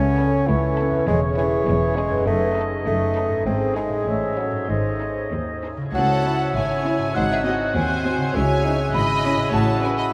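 Opening on a bed of up-front bassoon, distant oboe and clarinet, ringing harp arpeggios, mellow French horn chords and bowed cello and double bass sections, joined at 0.2 seconds by a violin melody and a second violin line, hollow flute, and a very quiet viola section, this playful, whimsical cinematic cue in C# minor at 100 BPM in 2/4 drifts through a vast, echoing reverb until a delicate, bell-like, slightly out-of-tune celesta joins the melody at 6.0 seconds, giving the magical, mischievous fragment its sweet sparkle.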